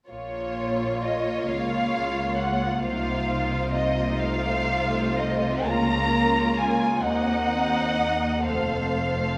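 A classical excerpt cut from a longer piece, this slow romantic movement for string orchestra moves in 6/8 at about 43 beats per minute in dotted quarters, with uneven beats and free rubato that give it a melancholic, solemn air in Bb minor. Up front, a dark, woody first violin section carries the melody with vibrato, while a second violin section with a soft attack and smooth top sings an expressive inner line beneath it. Violas fill in the accompaniment with an even, lush tone, and the bass is held by distant cellos sitting in the background alongside clear double basses with light vibrato. All five sections play together from the opening at 0.1 s through to 9.4 s, moving from Bbm through F7/C and Cm7b5/Eb before coming to rest on F. A generous concert hall reverb surrounds the ensemble, lending the bowed strings a spacious, enveloping glow.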